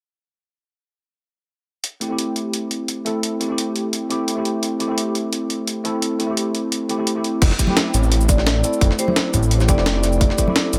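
Uplifting and lush, this short cut from a longer liquid drum and bass track opens at 1.8 seconds with a gritty, tape-flavoured breakbeat kit whose high-tuned snare, hi-hat, shaker and crash sit up front. A clean tine electric piano joins almost at once, pushed through a combo amp with analog chorus and dub echo, playing over an Am7 chord in its middle register. At 7.4 seconds the drop arrives and the harmony moves to Fmaj9 as a deep, rumbling detuned saw bass enters, saturated and beating, alongside a tight, layered electronic kick. Bright, hard-handed congas tuck into the background, and from 8.3 seconds a metallic, ringing vibraphone with slow motor vibrato adds a brief high melody touched with delay. The mix is dry, with little reverb.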